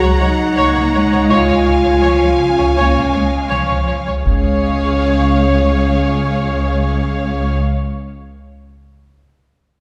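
A cinematic, epic orchestral passage opens with the full string body and a French horn section sounding together, the present horns holding sustained chords while lush, vibrato-rich violas fill in the accompaniment. Violins sing a second line up high with a soft attack and an expressive, smooth top. Beneath them, close cellos and woody, up-front double basses anchor the bass. The harmony moves from Gb over Db to a settled Db chord, giving the music an adventurous, heroic lift. At 4.3 seconds a taiko ensemble strikes in with heavy sticks and a small-room acoustic, playing until 5.7 seconds. The orchestra is heard from further back in a wet scoring stage, its reverb trailing through this brief cut from a longer piece.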